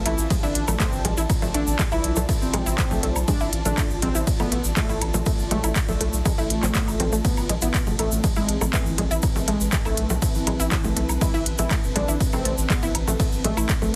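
Dark and driving, this melodic techno cut from a longer piece moves at 121 BPM in a straight 4/4, set in A harmonic minor with the tuning at A4 = 438 Hz. An overdriven, layered techno kit of congas, handclaps, smooth hi-hats, ride cymbal and woodblock enters at 0.1 s, a grainy, bright egg shaker follows at 0.2 s, and a punchy analog kick re-recorded in a large room anchors the groove from 0.3 s. Beneath them a round, deep analog bass with a fast attack sits low, while a fat, detuned sawtooth lead with a sub octave, vibrato, subtle chorus and digital delay carries the mellow melody. A lush, nasal unison pluck spins arpeggios in the background through dub echo, and an ethereal, airy pad with a slow attack, long release, ensemble chorus and built-in reverb drifts behind everything, with sidechain pumping on the pad, lead, pluck, bass and the kit's cymbals, percussion and hats. The harmony shifts from Dm/A to Amadd9 at 7.2 s, and the whole mix has a heavily compressed, radio-like sheen.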